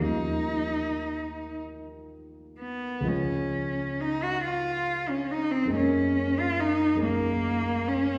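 A rubato 6/8 pulse drifts along at 37-48 BPM in dotted quarters, carrying this dreamy, luminous impressionist classical duo in Db major, cut from a longer piece. An up-front bowed cello, clear and focused with vibrato, sings the melody, while a dark, mellow concert grand piano with deep bass, short sustain and a smooth, vintage character supplies the accompaniment, the harmony moving from Eb9 to Db at 3.1 seconds and on to Gb69 at 5.7 seconds. A wet scoring-stage reverb sets the pair further back in the room, wrapping the 8.2-second passage in a spacious glow.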